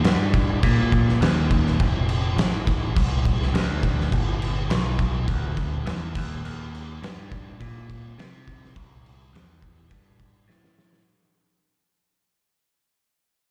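A growling, picked electric bass pushes its overdriven, amped tone up front, riding low and bright under a rowdy, swaggering garage rock groove in straight 4/4. Beside it an oversized, low-tuned acoustic drum kit pounds with a punchy kick, fat snare and dark cymbals, its saturated, gritty sound caught in a stone room with a rolled-off top. Heard as a live club gig through the venue's system, this excerpt fades out across its length and closes on a drum fill at 10.5 seconds.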